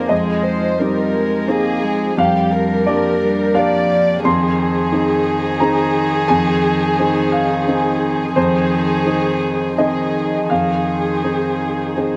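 A fragile, reflective neoclassical piece in a rubato triple metre opens with all four parts together. Up front, an intimate concert grand piano with audible action noise and deep bass carries the accompaniment, while a close chamber violin section plays the melody with light vibrato and soft, sul tasto bowing. A single cello, rich and floating, adds a pure second line, and a very quiet, swirling analog pad of detuned sawtooth chords with phaser and chorus sustains beneath them, all under light reverb in an outdoor recording as the harmony moves from Abmaj7/F through Gm7/F to Fm7 at 4.3 seconds.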